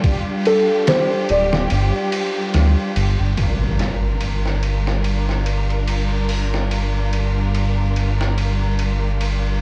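A cinematic, hypnotic trip hop cut from a longer piece opens at 72 BPM in G minor, with a bright, biting studio string section holding lush, distant sustained chords over a Dm harmony while a sampler-style drum kit of hi-hat, kick, snare and ride plays with a lazy 16th-note swing. The drums sound compressed, pitched down and gritty, with a thumpy kick and a medium-tuned snare re-recorded in a small room, each piece thinned by high-pass filtering. A soft, felt-muted upright piano offers a brief, intimate melody from 0.5 to 1.7 seconds, its mellow tone trailing into tape echo, as a round analog bass enters underneath, deep, dark and up front with an evolving blend of sawtooth, sine and triangle tones. The kick drops out from 1.7 until 3.4 seconds, when the harmony shifts to Gm7 and an electronic impact lands for the second section. The whole mix carries light reverb and the worn, warbling pitch drift of old cassette tape.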